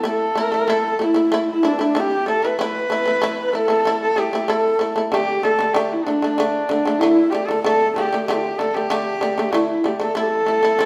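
Mongolian folk in a proud, vast mood, this short cut from a longer piece sets a rich, nasal horsehead fiddle up front on the melody with light vibrato and portamento, a bright, buzzing shamisen plucking arpeggios beside it, and a breathy low xiao drifting in the background on a second line, all played live together in one room with a wet studio reverb over a steady 4/4 while the harmony moves between A5 and D5 power chords.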